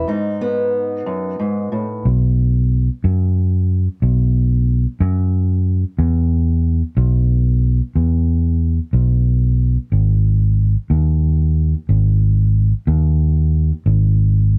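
A dark, round electric bass sits up front through the whole clip, fingered with a punchy, amped tone that carries this uplifting yet nostalgic indie folk piece in a lilting 6/8. A fingerpicked steel-string acoustic guitar with a concert-style body joins it only for the opening 2.0 seconds, over a G#m7 chord during a break that begins almost at once. From 2.0 seconds the bass carries on alone as the arrangement shifts to a sparse progression of B5, E5 and G#5 chords, the last arriving at 9.9 seconds. The sound is dry and close, coloured by worn, warbling old cassette tape whose pitch drift gives the clip a faded, home-recorded charm. Tuned a touch below standard pitch, this short cut from a longer piece feels like the start of a song still gathering its parts.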